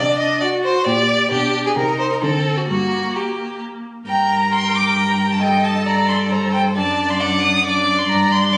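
A focused first violin with vibrato carries the melody up front from 0.4 seconds in this stormy, urgent fragment of a quick classical-period string quartet movement in G minor, set in 3/4 at 134 BPM. Beneath it, a second violin with a rich, smooth tone plays a supporting line, the bowed viola fills in the accompaniment, and a warm cello anchors the bass, with the music moving into a new section at 4.1 seconds. Captured on a phone in the room with light studio reverb, the sound is somewhat muffled at the top end.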